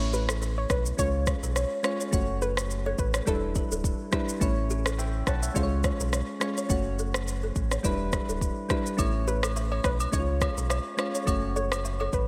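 Afrobeats at 105 BPM in 4/4 with a light swing on the sixteenths, this sultry, smooth excerpt cycles through A, C#, F#m and Em7 under a lush hall reverb and a bright 1980s-style digital sheen. Soft, round electric-piano-like synth keys with chorus and a detuned, triangle-sine tone sit up front alongside a deep, full sine sub bass doubled at the octave, both running from the start. An electronic afro-pop kit pushes a deep kick, rim click and shaker, while a woody, buzzing kalimba riff rings with delay in the background. A dark, gentle pluck carries the melody with chorus and delay, playing at the opening until 3.7 seconds and returning at 9.3 seconds. Agogo bells and woodblock join at 9.0 seconds with a compressed, saturated acoustic character.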